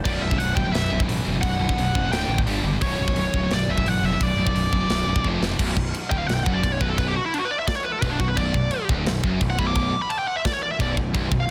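A dense, heavily limited modern master in a small room puts an up-front, mid-forward metal drum kit with bright cymbals and a tight kick in the foreground of this epic, aggressive heavy metal excerpt, cut from a longer piece. Beneath it, a scooped high-gain guitar and two sludgy overdriven guitars, one double-tracked, grind out low picked riffs in the background, while a growly fuzz bass adds weight. A high-gain lead guitar with delay carries the melody from the start, and after a drum fill at 5.2 seconds it breaks into a solo at 5.6 seconds.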